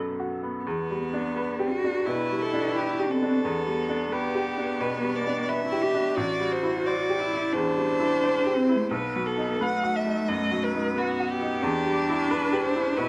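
A rich, smooth violin carries the melody from 2.1 seconds in this reflective, melancholic neoclassical piece for piano and strings, which moves with a rubato feel. Beneath it, a close, expressive cello sings a bowed second line with vibrato and portamento, while a bright, woody upright piano with long sustain plays the accompaniment through a chord progression that settles on Em7. The trio sits up front in a moderate large-studio reverb, and the recording is cut from a longer work.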